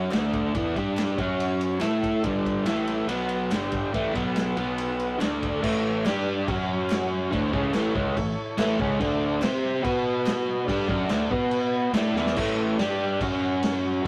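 A crunchy, double-tracked overdriven guitar riff leads from the first moment of this swaggering, rowdy garage-rock excerpt in A mixolydian at 142 BPM, with a reedy combo organ holding sustained chords through heavy vibrato and a growling, overdriven fingered bass sitting in the background. A muffled vintage drum kit with dark cymbals and a punchy kick joins at 0.1 seconds alongside very quiet, crisp group handclaps that drop out at 12.0 seconds, and a drum fill at 12.2 seconds launches the return of the second section. The rough rehearsal-room sound carries light reverb and warm saturation.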